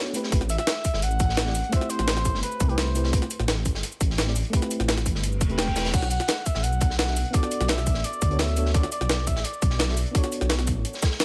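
A straight 4/4 pulse at 171 BPM drives this lush, melancholic liquid drum and bass passage in B phrygian, cut from a longer piece. A tight, layered electronic kick sits up front alongside two breakbeat layers: a gritty, pitched-up sampler-style jungle kit with crash, hi-hat, shaker and compressed snare, and a saturated acoustic kit of hi-hat and snare with a rolled-off top and studio reverb. Underneath, a dark detuned saw bass rumbles deep with a beating, sustained tone, while a soft, round FM electric piano carries the Am9 and Bm9 chords with warbling chorus, tremolo and a vintage cassette haze. A cup-muted trumpet sings a veiled, classical-style solo line through digital delay, pausing around the middle before returning at 5.6 seconds. Just before that, a faint reverse cymbal rises in the background from 5.4 to 5.9 seconds, and the whole passage sits in a small room ambience.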